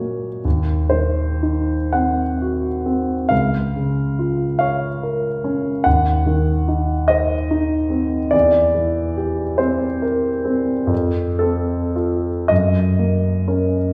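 Wistful and yearning, this slow romantic nocturne for solo piano drifts in 12/8 at 35-50 BPM, counted in dotted quarters, with a free, rubato feel. A warm concert grand with deep bass sits up front, spanning Db2 to Gb5, while a wet recital hall reverb lends the sense of hearing it from further back in the room. The harmony moves through Cdim/Eb and Bbm/Db, reaches C7/E at 8.3 seconds, then turns to F and Gb in this short cut from a longer piece.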